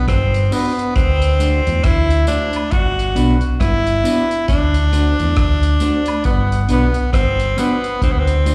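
Roots reggae in a sunny, uplifting mood, cut from a longer piece, with an edgy, forceful tenor saxophone carrying the solo melody up front, its scooped notes trailed by dub echo, plate reverb and slapback echo. A deep, round fingered electric bass sits prominently beneath a cloth-damped, thuddy drum kit with a tight kick and rolled-off top, while a clean, picked electric guitar enters at 0.5 s alongside a tambourine and woodblock tucked in the background. The harmony rocks between Gmaj7 and D7, and the whole band sounds like a live gig heard through the venue's PA in a reverberant recital hall.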